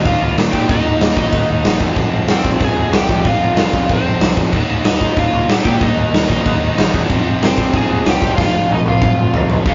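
A straight 4/4 punk rock pulse at 187 BPM drives this raw, aggressive excerpt, with a big, punchy rock drum kit up front in a bright stone room, its crash, kick, medium-tuned snare and toms closing on a fill from 8.4 to 9.7 seconds. A crunchy overdriven lead guitar carries the melody over three very quiet picked riff guitars (a sludgy overdriven one, a compressed distorted one, and a double-tracked fuzz guitar), while a growling overdriven bass sits in the background. The chords alternate between Eb5 and Fm, and the whole take has the rough, tube-saturated feel of a rehearsal room with light reverb and a dulled top end.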